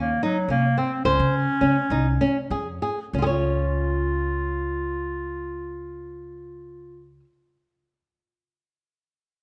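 Moving in an uneven 7/8 with a straight feel, this short cut from a longer contemporary chamber piece slows down over its first 3.1 seconds before settling into a new section. The mood is restless yet hopeful, with harmony passing from Gb to Dbmaj7 and arriving on Db as the second section begins. A fingerpicked flamenco guitar carries the arpeggios with a warm, fresh-stringed acoustic tone, sitting up front and a touch louder than its partners. A classical-style clarinet sings the solo melody with a warm voice, while a pizzicato upright bass supplies a woody, thumpy low line on steel strings. All three parts play throughout, close and present, framed by a moderate recital hall reverb that lends the trio a natural sense of space.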